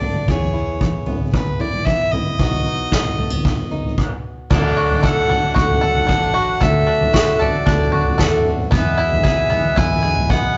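The recording has a rough rehearsal-room character, with tube saturation, a dulled top end and a moderate stone-room reverb. This hopeful, uplifting indie folk passage moves at 114 BPM in a straight 4/4. It opens over E and B chords with a nasal, reedy fiddle carrying the melody up front. Beneath it are a fingerpicked jumbo acoustic guitar with audible finger squeak, a round, foam-muted electric bass sitting in the background, and a roomy soft-mallet drum kit with a punchy kick. After a brief stop from 4.0 to 4.5 seconds, the arrangement builds as a full-bodied picked dreadnought guitar, a twangy, percussive bluegrass banjo playing arpeggios, and a very quiet, breathing harmonium holding sustained chords join in, while the harmony moves to D and then back to E. The fingerpicked guitar drops out at 6.1 seconds, leaving the fuller second section to the fiddle, bass, drums and the three newcomers.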